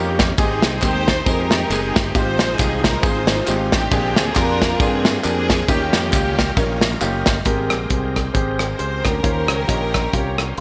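Uptempo gospel with a hopeful, reverent swing, where a lush, bowed string section carries the melody over a deep-voiced grand piano, a very quiet, lightly overdriven tonewheel organ with rotary speaker and key click holding chords, a punchy fingered electric bass, an up-front drum kit with a punchy kick entering at 0.2 seconds, and background tambourine and handclaps that drop out at 7.4 seconds, all in a glossy 1980s-style digital production with plate reverb, closing on a piano fill at 10.4 seconds of this brief cut.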